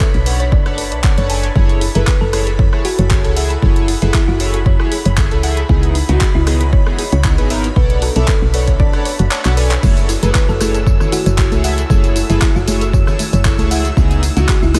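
Cut from a longer piece under light reverb, this deep, warm deep house groove rides a punchy, up-front electronic kick and a round, woody FM bass beneath a deep house kit of crash, handclaps, hi-hat, rim click and tambourine. Glossy, retro chorused polysynth stabs pump alongside percussive mallet-like pluck arpeggios, an airy breathy pad and shimmering string-machine violins, the last three sitting in the background with a tine-like thumb-piano-style pluck melody carrying tape echo, all over minor ninth chords, until the kick drops out at 9.3 seconds for a short drum fill and bright, dry congas join at 9.8 seconds.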